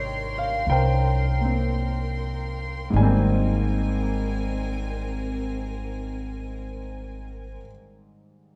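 In free time that slows over the first 2.9 seconds, this romantic, intimate jazz ballad is cut from a longer piece. A present baby grand piano accompanies up front beside a woody, thumpy pizzicato upright bass on gut strings, while a close studio string section holds soft-attack bowed chords, played sul tasto with light vibrato. Strings and bass stop at 7.6 seconds as the piano rings on to 8.6, all in a wet, large studio reverb that lends a sense of distance.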